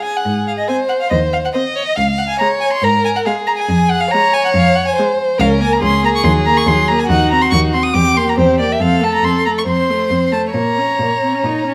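In a straight 4/4 feel, this urgent, restless classical-period string quartet passage, cut from a longer movement, places a rich first violin up front on the melody over a second violin whose expressive line glides with portamento, while a focused cello enters on the bass at 0.3 s and a smooth, even viola joins in accompaniment at 0.7 s, each a single bowed player with vibrato, heard through close, detailed microphones in a moderate recital hall reverb.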